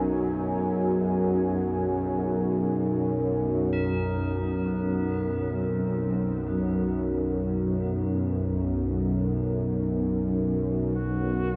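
Unfolding in free time, this dark ambient drone, cut from a longer piece, feels unsettling and desolate. Up front sits a tense, string-like bowed drone with a sawtooth edge, vibrato and a ring-modulated noise layer, while a deep, moody pad evolves in the background, thickened by chorus and a sub octave as the harmony shifts from F#sus2 to B5 at 3.7 seconds. Solemn, metallic tubular bells ring out in airy arpeggios that fade in from that point, trailing a diffuse delay. At 3.8 seconds a mellow, vintage-toned duduk enters as a folk-style solo melody with vibrato, also fading in and echoing through the same diffuse delay. A huge, wet reverb with a 7.9-second decay surrounds the whole ensemble, leaving the sound cavernous and isolated.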